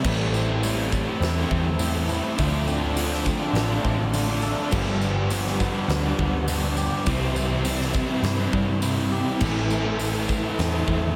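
Opening straight onto a wistful, dreamy shoegaze and dream pop groove at 102 BPM, this reverb-soaked excerpt layers a round, dark hollow-body picked bass and a huge arena drum kit with bright cymbals, a fat snare and a boomy kick under a wall of background guitars (a thick fuzz riff with ensemble chorus, a crunchy overdriven riff trailed by reverse reverb, a double-tracked overdriven riff, and twangy clean arpeggios washed in lush chorus and diffuse delay) plus a jingly tambourine, all moving through Am7, Dm7, G7 and C before landing on Am.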